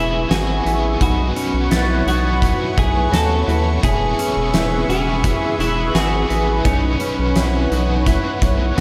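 A dreamy, reverb-soaked mix bathes this ethereal, blissful dream pop fragment at 85 BPM in E major, where a bright, twangy clean electric guitar carries the melody with subtle chorus and tape echo over a dark, fingered electric guitar playing arpeggios and a biting overdriven guitar colored by tremolo and analog chorus. A lush, detuned unison pad holds sustained chords through chorus and phaser, a round analog bass sits up front, and a delicate, bell-like celesta glimmers in the background. An oversized low-tuned drum kit with a boomy kick and fat, gritty snare enters at 0.3 seconds as the harmony moves between E6 and Bsus2.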